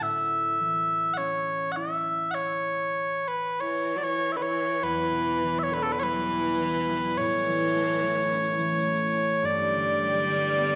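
A moderate hall reverb of about 1.4 seconds gives this recording the soft, rounded air of a church or concert hall, with its top end rolled off. It is a tender, pastoral Celtic slow air in A mixolydian, moving freely at around 52 BPM in 4/4, cut from a longer piece. Sweet, mellow small bagpipes carry a continuous melody up front, while a concert harp rings beneath with fingerpicked acoustic accompaniment. From 3.6 seconds, a rich, focused viola, bowed by one player with vibrato, adds a second line. At 5.8 seconds an icy, crystalline glass pad slowly enters in the background, and its airy, chorused sustained chords linger over the harmony of A, E minor and G.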